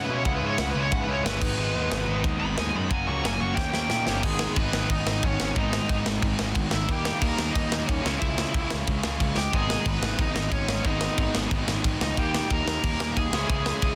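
A half-time feel opens this urgent, aggressive punk rock excerpt at 181 BPM in straight 4/4, giving way at 4.2 seconds. The tight metal drum kit enters just after the start with crash, ride, kick and snare, its saturated, gritty sound sitting up front with a rolled-off top, and fills at 3.6 and 9.4 seconds mark the turns. Over it, a high-gain lead guitar plays a distorted, picked solo through the opening and carries the melody throughout, reaching as high as C#6. A cranked stack guitar, double-tracked and overdriven with a bright edge, drives the riff alongside a growly fuzz bass. The music sits in G# minor, moving into G# harmonic minor as the chords cycle through G#m, D# and C#m, and the dense, heavily limited modern master has little reverb.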